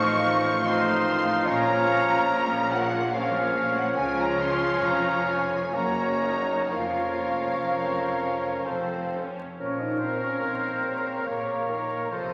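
Solemn and elegiac, this excerpt from a longer classical piece moves in a slow, rubato 3/4 at around 59 to 74 BPM in Bb minor, passing from F7/A through Bbm, Db, Gb and Bbm/F to F before settling back on Bbm at 9.6 seconds. A violin section carries the melody high in its range with a focused, lush vibrato, while a second, very quiet violin section, an airy flute group, a warm oboe solo and a faint clarinet weave second lines beneath it. Violas and a mellow, vintage-toned bassoon fill out the accompaniment, and a soft-edged French horn section holds sustained chords alongside a distant, roomy trombone section. A mellow trumpet adds background stabs, and the bass is anchored by rich, even cellos and double basses with a punchy but very quiet tuba. Trombones and trumpet drop out at 9.2 seconds and the tuba at 9.4 seconds, leaving strings, winds and horns for the closing bars. The whole ensemble sits in a reverberant scoring-stage space, with a layer of vinyl crackle lending an aged patina.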